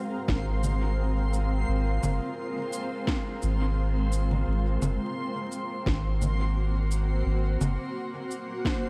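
Peaceful and hazy, this short ambient dub excerpt at 86 BPM in Ab mixolydian drifts from Ab13 to Gb over a cloudy, detuned granular pad and a reversed, dreamy swelling texture, both bathed in their own reverb, while a round, up-front sub bass, a deep layered kick, and a woody, tape-touched snare with congas and cabasa carrying dub echo enter at 0.3 seconds beneath a coat of vinyl crackle.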